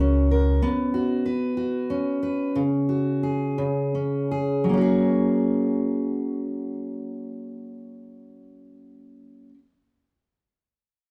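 A roomy live-band studio sound with moderate reverb frames this romantic, swaying six-eight pop ballad fragment, where a dark, thumpy pizzicato upright bass on gut strings sounds only for the first 0.6 seconds beneath an up-front, full-bodied jumbo steel-string acoustic guitar, fingerpicked and woody with old strings, which carries the harmony through a gradual slowing from 0.6 to 4.7 seconds and on into a second section.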